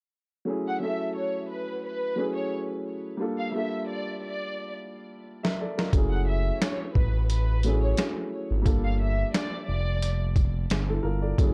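A gritty, pitched-down boom-bap kit with a thumpy kick and medium-tuned snare arrives up front at 5.4 seconds, joined at 5.9 seconds by a smooth, gliding sawtooth-and-triangle synth bass with vibrato and a moving notch. This moody, dark hip-hop fragment moves at 88 BPM in 4/4 with a swung 16th feel. From 0.5 seconds a boxy, deep-bassed concert grand piano holds the accompaniment over alternating F#m9 and Gm9 chords, while from 0.7 seconds an intimate, close violin section plays a soft, bowed sul tasto melody touched by tape echo, all in a dry, warm production.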